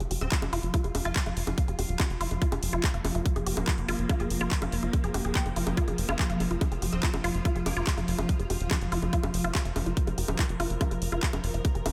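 A light reverb hangs over this short cut from a longer psychedelic trance track, alien in mood and driving along in straight 4/4 at 143 BPM over a rootless Ebsus2 chord. A tape-warm electronic kick and an overdriven techno kit of bongos, handclaps and hi-hat push alongside a dark, punchy sequencer bass, while a lush, detuned unison pluck riff pumps to the sidechain and trails into diffuse ambient delay. A swarming, ring-modulated drone holds tense, evolving chords from 0.1 seconds, and a very quiet metallic FM wobble bass surfaces briefly at 0.2 and 6.9 seconds.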